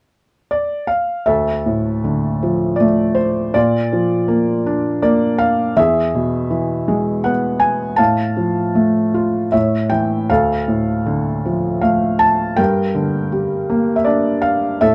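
In a 3/4 at 80 BPM with a free rubato feel, this wistful, reflective classical excerpt in D minor features a felt-muted upright piano playing solo from 0.5 to 14.9 seconds, its soft, intimate, mellow tone sitting up front in a dark production with light reverb as it spans D2 to A5 through chords moving from Dm to Bb, E, F/A, A, back to Dm and on to Gm.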